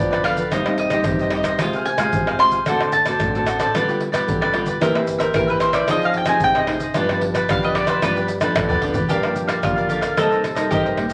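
Samba and choro in a straight 4/4, this short cut from a longer piece carries a nostalgic, bittersweet mood. A woody, double-strung mandolin takes a picked solo through the opening 9.1 seconds, ranging up to C6 over chords that move from G7 and Cm through Fm/C and D7. Beneath it, a crisp, bright cavaquinho sits up front with picked accompaniment, while a fingerpicked nylon-string guitar adds classical warmth lower down. A mellow bassoon carries the bass line in a classical style with vibrato. The close percussion of tube shaker, pandeiro, tamborim and a deep surdo plays a fill at 8.6 seconds that leads into a brief new section on Gm7 and Cm7. Wet club reverb and a layer of vinyl crackle give the whole an aged sound.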